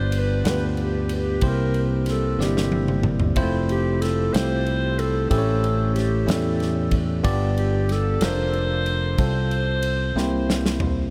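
Uplifting and hopeful, this slow gospel excerpt in 6/8 at 62 BPM sets a distant, mellow clarinet melody with delay over bell-like, bright tine electric piano, a round, punchy fingered electric bass and an acoustic country drum kit with a punchy kick that plays fills at 2.4 and 10.2 seconds, all bathed in a huge ambient reverb that gives the mix a dreamy glow as the chords move from G7 through Fmaj7 and A7 to close on C7.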